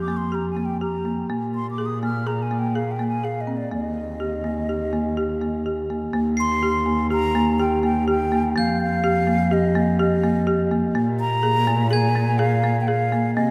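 A breathy, mellow concert flute sings the melody with vibrato over rustic marimba arpeggios and a dark bowed cello bass, and a bell-like glockenspiel adds sparkle in the background from 6.4 s in this playful, shimmering contemporary chamber piece in 5/4, cut from a longer work and bathed in the long reverb of a vast, echoing cathedral.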